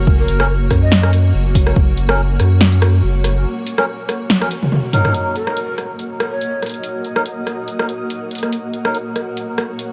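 Dark and cavernous, this half-time deep dubstep excerpt at 142 BPM in Gb opens on a drop where an overdriven deep kick, heard until 1.9 s, and a round, triangle-and-square soft sub bass sit up front, the bass stopping at 3.5 s for a break and a drum fill leading into a second section at 5.1 s, while a punchy, overdriven deep house kit of hi-hat, rim click, snare and toms carries on up front alongside a blurred, evolving granular cloud pad, reedy low-pass-filtered melodica stabs with dub echo, and breathy, vibrato-laden ney phrases echoing in the background.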